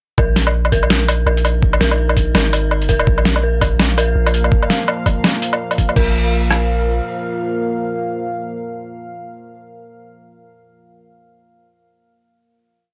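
A dry, gritty hardware recording opens straight into a cinematic, spacious half-time drum and bass drop at 166 BPM with a swung feel, where an overdriven, pitched-down sampler kit of thumpy kick and rim click, plus closed hat, woodblock, snare and crash, drives a sparse beat beneath deep, sine-toned 808-style bass phrases chopped between Ab1 and Bb1. Above it, an eerie FM bell with 12-bit sampler grit and analog delay loops a 6-step sequence that drifts against the bar, while a very quiet metallic drone holds a high Eb4 from 1.1 seconds. A moody sawtooth pad with sidechain pumping enters at 3.9 seconds and sustains a final chord from 6.0 seconds to the close.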